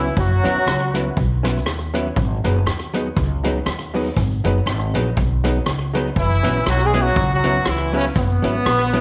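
Driving and mischievous, this short ska passage, cut from a longer piece, moves at 120 BPM in 4/4 with a light swing on the eighth notes. An up-front horn section carries the melody in loose octave doubling with vibrato, sounding briefly at the start and then returning at 6.2 seconds. Beneath it, a thumpy, woody pizzicato upright bass anchors the low end while a dark, clean hollow-body jazz guitar plays fingered, compressed accompaniment with a slapback echo. A worn, slightly detuned upright piano adds stabs, and a street-band drum kit enters at 0.2 seconds with hi-hat, rim click and a boomy kick, its rolled-off top also carrying slapback echo. The harmony moves from F#7sus4 to G#m7 and back, all set in a small room with a moderate spring reverb.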